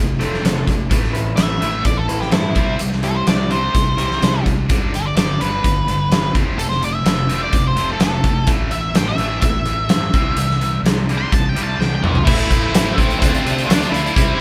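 A big, up-front acoustic drum kit with a fat snare, punchy kick and rolled-off top drives this dark, angsty quiet-loud alternative rock passage, cut from a longer piece, while a dark octave-fuzz lead guitar plays a solo melody from 1.4 seconds, ending with a drum fill. Beneath it, bright picked high-gain guitars, one scooped, play riffs in the background over a growly fingered fuzz bass, and a slightly broken-up, lo-fi guitar through a small old amp picks arpeggios only until 4.5 seconds. At 12.3 seconds the music shifts to a new section where a double-tracked scooped guitar riff joins and a soft, flute-like tonewheel organ with key click and chorus vibrato holds mellow chords in the background, all set in a moderate stone room as a band playing live together.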